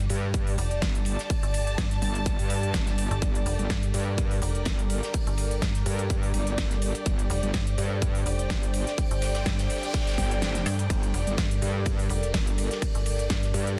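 A distorted, metallic wobble bass sits up front in this swaggering, aggressive bass house excerpt, joined by a mellow, decaying FM bass, with both pumping against a punchy, tape-warm electronic kick. A big-room dance kit adds a huge snare and crisp hats, while a dark-cymballed acoustic kit sits in the background beneath a moody sawtooth pad with chorus and phaser and a lush, woody bowed string section, over a single minor add-nine chord. A noise sweep enters in the background at 9.3 seconds and the kick drops out from 10.4 to 10.9 seconds, all in a small room and a dense, heavily limited master.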